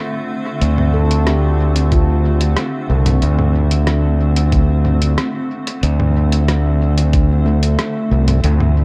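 A straight 4/4 pulse at 92 BPM sets a spacious, deep ambient dub groove in D minor, resting on a single Dm7 chord throughout this short cut from a longer piece. From the opening, a granular cloud pad sustains blurred, evolving chords with a slow attack and long release, its bright, cloudy texture softened by built-in reverb. Also from the start, in the background, a stainless steel handpan struck with the fingertips rings out meditative arpeggios from a boxy small room, repeated through dub echo. At 0.6 s a lo-fi, sampler-style drum kit of hi-hat, rim click and toms enters, pitched down, muffled and tape-colored, its hits trailing off in dub echo. Alongside it comes a growling fingered electric bass that sits up front, bright and overdriven with tube saturation, holding the low register between C2 and D2. A compressed, thumpy electronic kick joins at 1.9 s and drops out at 7.3 s, while a digital ambience surrounds the whole mix.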